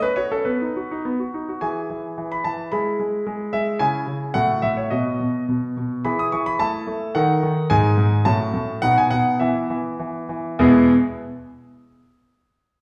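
A brilliant, polished concert grand piano opens this cheerful, elegant classical-period sonatina excerpt in E major, playing solo in a straight 2/4 at roughly 99-111 BPM with deep bass and short sustain, moving through chords such as E, C#m, F#m/A and B before slowing down from 7.7 to 10.6 seconds and settling on E, all set in a wet recital hall reverb heard from further back in the room.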